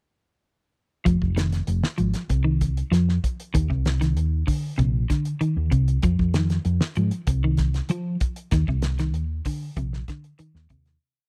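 Hypnotic and intense, this short afrobeat piece in F dorian moves at a straight 96 BPM in 4/4, with all three parts entering together at 1.1 seconds and the groove fading out from 8.5 seconds. A damped 1970s drum kit lays down an afro kit groove with a fat snare, tight kick and rolled-off top, while a dark, round hollow-body short-scale fingered electric bass drives a syncopated riff. Up front, a clean, scooped electric guitar picks a low arpeggiated ostinato over alternating F7 and Eb5 chords, all captured in a dry, close 1970s-style studio sound.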